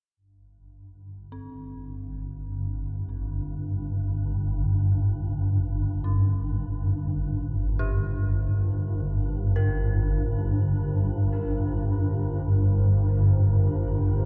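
This dark ambient drone piece, taken from a longer work, feels cavernous and ominous, unfolding in free time under a wet cathedral reverb that lingers for 4.9 seconds. A swarming drone takes the foreground from 1.4 seconds, its low, detuned granular mass tense and evolving as a filter sweep moves across it. Just before it, at 1.3 seconds, a dark detuned synth bell fades in with eerie, inharmonic FM arpeggios whose tones decay into long tails, colored by chorus, tremolo and tape echo. From 5.1 seconds a deep, moody sawtooth pad with a sub octave fades in behind them, holding sustained chords softened by chorus and sitting far in the background. The production is dark and warm.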